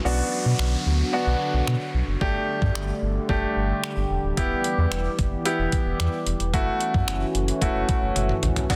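A dense, heavily limited modern mix with light digital ambience carries this energetic, bittersweet dance-pop excerpt in B minor at 111 BPM: a clear baby grand piano and a detuned, wave-folded sawtooth pad with chorus, phaser, a slow attack and a filter swell pump under sidechain over a deep sine sub bass with octave, while a thumpy, tape-toned 8-bit drum machine enters at 0.6 seconds with kick, finger snaps, hi-hat, toms, crash and a soft-clipped snare, adding a drum fill at 8.2 seconds, and an electronic downlifter and impact sit beneath chords moving Bm, Gsus2, Em and F#m7.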